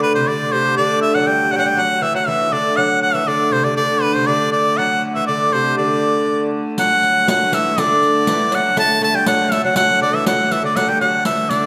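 Set in a reverberant recital hall with a long, wet tail, this festive, rustic medieval dance moves at 120 BPM in a straight 2/4, in D mixolydian with tuning at A4 = 439 Hz. An edgy shawm carries the folk-style melody up front with a light vibrato, over a delicate fingerpicked lute second line on doubled nylon strings and a rich, nasal, earthy hurdy-gurdy drone. When the opening section repeats at 6.8 seconds, a riq joins with dark jingles, and the cut ends at 11.7 seconds.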